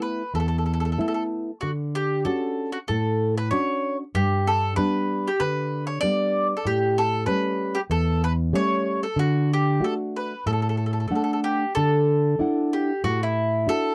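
A round, picked mandolin carries the melody up front, its double strings ringing in the register between E4 and D5. This is an Italian folk serenade in D major with a romantic, sunny mood, taken at about 94 BPM in 4/4 but played with a rubato feel that lets the pulse breathe. Beneath it, a nylon-string guitar supplies the accompaniment, thumb-plucked with a dark, full-bodied, deep classical tone that reaches from E2 up to F#5 and sits just as close as the mandolin. The harmony moves from Asus2 through Dmaj7, G and A7 before settling on D at 9.2 seconds, then opens onto a new passage at 11.8 seconds colored by a Dadd9 chord. The sound is dry and intimate, like a close 1970s-style studio session, and this short passage is cut from a longer piece.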